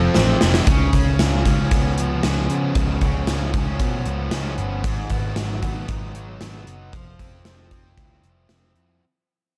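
Shoegaze-tinged dream pop rock at 115 BPM in Db mixolydian, this wistful, dreamy fragment of a longer piece opens with a drum fill at 0.2 seconds before fading out from 0.7 seconds, as a double-tracked fuzz guitar riff with subtle chorus rides up front over a dark, round, foam-muted picked bass and a punchy gated 80s drum kit set in a bright stone room, all bathed in light reverb and small room ambience through chords moving from Fmaj7 to Db7, Abm7 and F5.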